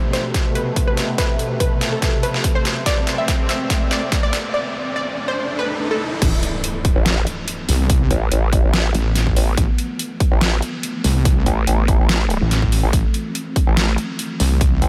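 A detuned sawtooth pluck opens this heavy, chaotic wobble dubstep excerpt in A minor, carrying a punchy melody through analog delay over a thick, airy pad that holds sustained chords with chorus, phaser and sidechain pumping. An electronic riser builds beneath them, and a dubstep drum kit with a deep snare and bright hats runs a fill early in the build-up alongside an overdriven, punchy electronic kick set up front, all at 143 BPM in a swung half-time feel. At 6.2 seconds the pluck drops out as an impact lands and a saturated, detuned wobble bass takes over, mixing sawtooth and sine tones in a mellow yet weighty, compressed low end. A nasal vowel-sweep wobble bass with a resonant formant filter joins at 7.0 seconds. The whole mix is bathed in a huge ambient reverb that gives it a dreamy, soaked sheen, and the piece is cut from a longer track.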